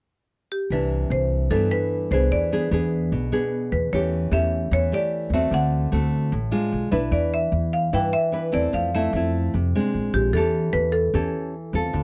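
Bossa nova at 150 BPM in C major, sophisticated and breezy, with a bright, percussive hard-mallet marimba carrying the melody from 0.5 s, joined at 0.7 s by a full-bodied, fingerpicked nylon-string guitar with old strings and a woody pizzicato upright bass, all up front in a dry, close 1970s-style studio sound as the chords move from Cmaj9 through E7, D7 and Fmaj7 to Bb9.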